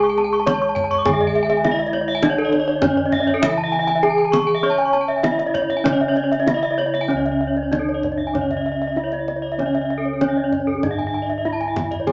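Up front sits a bronze metallophone carrying the melody, struck with a wooden mallet and heard close-miked, dry and full, its paired tuning giving a shimmering beat to each ringing note. This Balinese gamelan passage in C# pelog, cut from a longer piece, moves at 98 BPM in 4/4 with uneven beats and a shimmering, hypnotic mood. Above the melody, two more metallophones spin arpeggios: one also played with a wooden mallet and beating in its paired tuning, the other struck with a horn mallet for a bright, airy tone that climbs as high as D6+35c. Beneath them, a lower metallophone played with a horn mallet supplies a dark, smooth accompaniment. Bossed gongs, hit with padded beaters, lay a soft, mellow, round bass in the background, while the kendang joins at 0.2 s with deep, close, dry strokes from hard hands. A wet club reverb surrounds the ensemble as the music passes from its opening section into a second one at 7.1 s.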